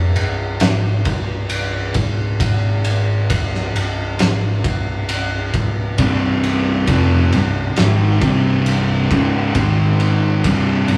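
A rough rehearsal-room recording with a small, wet ambience frames this ominous, brooding stoner and doom metal fragment in C phrygian, moving at a slow 67 BPM in straight 4/4. An overdriven, amped picked electric bass opens at 0.0 s in the lowest register, and an oversized low-tuned acoustic drum kit joins at 0.2 s, its boomy kick, fat snare and dark ride cymbal sitting gritty and up front in a pumping big-room sound. At 6.0 s two thick fuzz guitars enter with the riff, one distorted and forward, the other tucked behind it, as the harmony moves from Cm toward Ab5 and C5.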